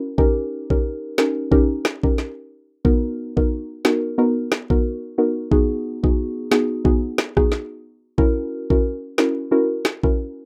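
A rough home-demo mix with a light reverb frames this hypnotic, tough dancehall fragment, cut from a longer piece, with a gently swung groove. Up front, an electronic island-pop drum kit pairs a knocking kick with a woody snare and rim clicks, while a soft, round, detuned pluck with a dark, wave-folded edge and chorus shimmer carries the accompaniment. Both parts run from 0.2 to 10.2 seconds over a D#7, Bmaj7, G#m7 and F#7 progression.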